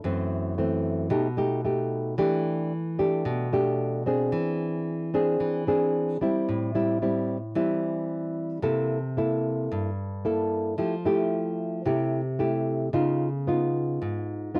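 Bossa nova in a sunny, relaxed mood, this fragment of a longer piece features a lone nylon-string guitar, thumb-plucked and classical in character, sitting up front with a warm, acoustic tone. It moves through a colorful progression from F#m7b5 and Baug7 through E7alt, C6 and Fmaj9 before landing on C#9 at 12.9 seconds. A moderate booth ambience surrounds the instrument, and the cassette home recording lends it an intimate, homespun quality.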